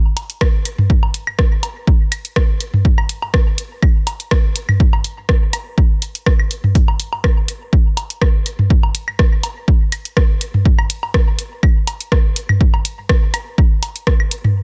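An up-front, overdriven electronic kick drum drives this quirky, sparse techno excerpt at 123 BPM with a light 16th-note swing, alongside a punchy analog drum machine's hi-hat and rim click and tape-warm electronic woodblock, claves and toms treated with tape echo, all in a dry but echo-heavy mix.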